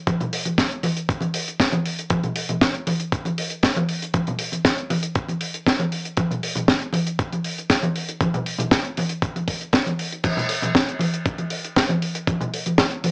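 A gritty, thumpy electronic kick, a tight funk drum kit with bright cymbals and a high-tuned snare, and saturated congas all start together in this groovy, sensual nu-disco excerpt, the kick and kit carrying studio reverb and cassette-tape colour, all heard through a moderate booth ambience with the small-speaker feel of a home cassette recording.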